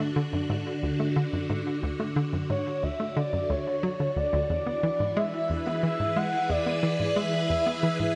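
Drenched in a wet plate reverb, this cosmic, expansive excerpt of ambient, sequencer-driven space music moves at 90 BPM in D lydian, with a swirling, vintage phased string machine holding sustained chords over a hollow, bouncy square pluck riff drifting through chorus and delay, before a smooth, expressive portamento lead with vibrato enters at 2.5 seconds to sing a melody as the harmony shifts from Dmaj7 to E.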